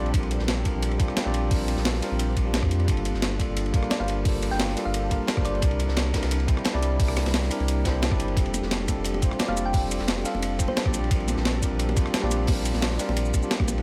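Dreamy and lush, this liquid drum and bass excerpt moves at 175 BPM in a straight 4/4, cut from a longer piece. A bright, bell-like tine electric piano carries the accompaniment through a digital delay, while a very quiet, shimmering ambient pad holds sustained chords with an ethereal octave-up shimmer and granular texture, cycling through Bb6, Gm9, C7 and F6 before returning to Bb6. Underneath, a deep, round sub bass with tube saturation sits up front alongside a thumpy, gritty electronic kick drum. Two breakbeat kits share the rhythm: an up-front, sampler-style kit with cabasa, hi-hat, rim click and snare, and a darker, crunchy acoustic kit from a small room with hi-hat, ride and snare, its top rolled off and its cymbals, hats, snare and room each passed through a high-pass filter. A gentle, thumb-piano-like synth pluck drifts in the background at 3.9 and 9.4 seconds, coloured by chorus, phaser and tape echo, and vintage congas join quietly at 8.5 seconds.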